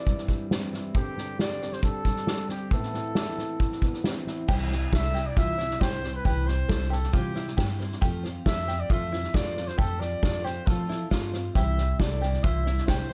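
A mellow, distant trumpet with light vibrato carries the melody over soft-mallet drums in this hopeful indie folk excerpt at 136 BPM in C major, where a fingerpicked steel-string guitar accompanies until 6.3 seconds and, from 4.5 seconds, a shimmering twelve-string guitar, plunky open-back banjo arpeggios with digital delay and a woody, thumpy upright bass build the arrangement in a dark, small-room sound.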